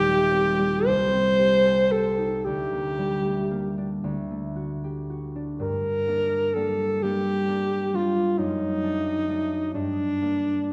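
In a rubato 6/8 sway, this melancholic, yearning fragment of a romantic classical duo sets a clear, classical-style alto saxophone solo with light vibrato up front over mellow, ringing thumb-plucked concert harp accompaniment, both bathed in a wet scoring-stage reverb as the harmony drifts from Cm/Eb toward a closing Gm at 9.7 seconds.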